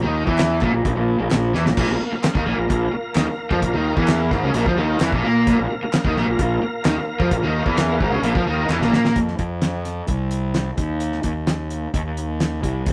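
A rough rehearsal-room recording with light reverb frames this confident, sunny classic rock excerpt in straight 4/4, where a raw, picked, double-tracked garage guitar riff and a dark, round fuzz bass stand up front over a dry 70s drum kit with a fat snare and tight kick, very quiet crisp handclaps join in, a slow-rotary tonewheel organ holds lightly overdriven chorus-vibrato chords in the background from 1.8 s, and the guitar drops out at 9.2 s after a drum fill, leaving bass and drums to carry on until 12.9 s.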